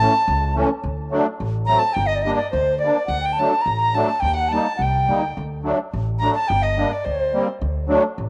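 Soulful yet festive, this short klezmer cut moves at 106 BPM in a straight 2/4, set in D phrygian dominant and tuned slightly sharp. A silver concert flute leads the melody with a pure, hollow, tongued tone and vibrato, carried by analog delay and sitting close to the ear. Beneath it, a single bowed violin traces a second line in the same register, its gut-string, period-style sound reedy and rich though placed lower in the balance and tinged with cassette tape. A musette accordion supplies the accompaniment with shimmering wet tuning and a boxy, up-front presence, while a woody, dark upright bass plucks the low end until 8.3 seconds. The harmony circles around D, stepping through Gm and Eb, and the whole home cassette recording is bathed in a moderate spring reverb.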